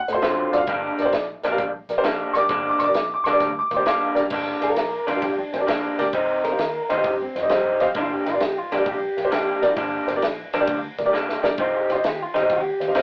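Electric blues shuffle in G minor at 132 BPM with a mournful, brooding swing, cut from a longer piece, where a clear, woody upright piano sits up front beside a slightly broken-up guitar riff with warbly pitch drift through a small old amp, a round, foam-muted bass tucked in the background and a compact cocktail kit with a high-tuned snare and punchy kick, while a darker second guitar joins them with a clean solo from 4.3 seconds, all heard through a rough rehearsal-room, AM-radio sound in a tight, wet booth.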